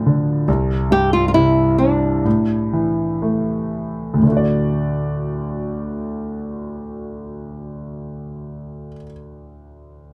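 A fingerpicked flamenco guitar with audible finger squeak carries the melody over an intimate concert grand piano with deep bass and audible action noise, both up front in this heartbroken, longing pop excerpt cut from a longer piece, where the guitar stops at 3.2 seconds as the tempo slows, the piano continuing alone until 10.1 seconds in a dry, close 1970s-style studio sound with light reverb.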